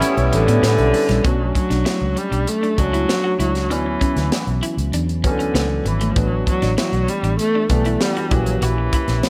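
A light reverb glosses this short, upbeat cut of polished 1980s jazz-funk pop at 98 BPM in 4/4, where an expressive bowed viola carries the melody with vibrato and portamento over a barky tine electric piano with lush chorus, a slightly broken-up guitar riff set in the background, a round, foam-muted vintage bass and a tight funk kit with a high-tuned snare, while shimmering string-machine violins and barely audible congas appear only in the first 1.2 seconds before the chords move from A7 through Bm9, Dmaj13 and A7sus4 to F#7b9/A#.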